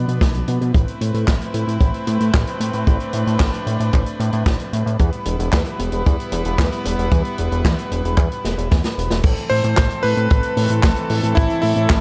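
A fat, up-front analog bass anchors this nostalgic, melodramatic italo disco excerpt, its detuned sawtooth and square-wave tone shaped by a filter sweep and a moving notch. A boomy acoustic kick drum sits in a small, natural-sounding room with an open jazz kit whose dark cymbals, medium-tuned snare, hi-hat and handclaps give the straight 4/4 groove a live feel. A chamber string section holds sustained chords throughout, its reedy gut-string tone carrying a period-style, bowed ensemble character over a progression that moves from Bdim through Amadd9 to Em. A drum fill from 8.4 to 9.2 seconds leads into a new section, where a bright, cutting electric grand piano enters at 9.5 seconds with a vintage, chorused melody treated with delay. Light reverb and studio ambience frame a dark, warm production, and the passage is cut from a longer piece.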